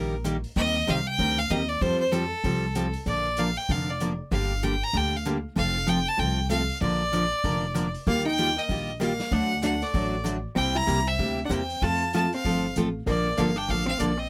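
A bright, intense bowed fiddle leads this playful, down-home western swing excerpt up front over a full-bodied picked dreadnought acoustic guitar, a woody, thumpy pizzicato upright bass and a vintage drum kit tucked in the background, with a dark, clean hollow-body electric guitar adding a second line from 8.1 seconds, all in light reverb.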